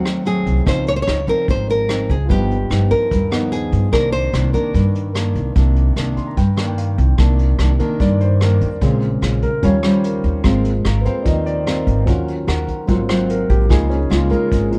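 A dark, warm production with light reverb frames this smooth, melancholic bossa nova fragment in straight 4/4. Up front, a small-sounding fingerpicked nylon-string guitar carries the melody until 6.7 seconds, while a second, classical-toned nylon-string guitar fingerpicks shadowy chords underneath, with finger squeaks audible on the strings. A concert grand with deep bass and audible action noise comps alongside, plays a fill from 6.0 seconds, then takes a solo from 7.2 seconds to the end. Pizzicato upright bass sits prominently in the mix, woody and thumpy, while a vintage brush kit in a small room supplies hi-hat, rim click and a tight kick with a rolled-off top. The harmony moves through rich extended chords such as Dbmaj9, G7alt and Cm9 before settling toward Db6.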